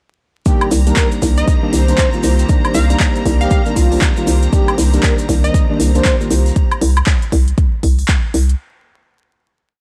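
A hollow, bouncy FM bass sits up front with punchy off-beat notes on C2 from 0.7 s, anchoring this warm, hypnotic deep house piece in C minor at 118 BPM, swung on the 16ths over a Cm7 chord and a deep four-on-the-floor electronic kick. Dark, dotted-rhythm organ stabs and an airy, breathy pad both carry sidechain pumping, while a soft flute-like synth lead with vibrato and analog delay repeats a riff. A crystalline wavetable pluck with tape echo adds short phrases, a shimmering string machine holds a high Bb5 in the background, and smooth hats, claps, woodblock and a grainy hand-played shaker fill out the groove in a dry, gritty recording with vinyl crackle, the drum kit running on to 8.6 s.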